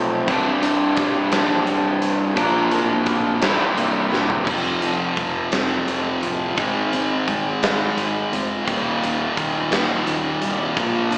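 This quiet-loud alternative rock excerpt in a straight 6/8 feels cathartic and restless, and is heard as if from a live club gig through the venue's PA, with a small-speaker tone and a light wash of room reverb. A full-bodied jumbo acoustic guitar picks arpeggios in the background throughout, with a little finger squeak, while a warm, overdriven fuzz bass sits low underneath. Up front, a double-tracked, distorted electric guitar plays a riff with slapback echo over chords moving from Csus2 through Bb to C7. A big rock kit in a stone-room ambience joins at 0.3 seconds, with a punchy kick, medium-tuned snare, glittering cymbals and toms, and snaps into a fill at 4.1 seconds. At 4.4 seconds a thick, double-tracked fuzz guitar takes over the riff with its own slapback echo, driving the second section through F5, Ab and Eb.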